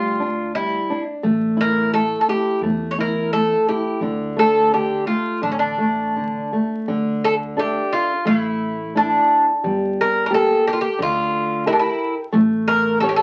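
This fado-style ballad opens with the Irish bouzouki, flamenco guitar and upright bass sounding together from the first moment, heard through the crackle of a very old 78 rpm record. The mood is passionate and longing, in D minor at 87 BPM in 4/4, played with a free rubato feel and tuned slightly low to A4 = 439 Hz. The picked bouzouki carries the melody up front, its double strings giving a warm, metallic ring. Beside it, the fingerpicked flamenco guitar supplies accompaniment over a broad range, while the pizzicato bass sits low and subdued with a woody, thumpy tone from its gut strings. The same passage is heard twice: the harmony moves through G5, A5 and D5, then Dsus2 at 6.9 seconds, Gmadd9 and A7. A short, wet club reverb surrounds the playing, and the fragment is cut from a longer piece, stopping at 13.2 seconds.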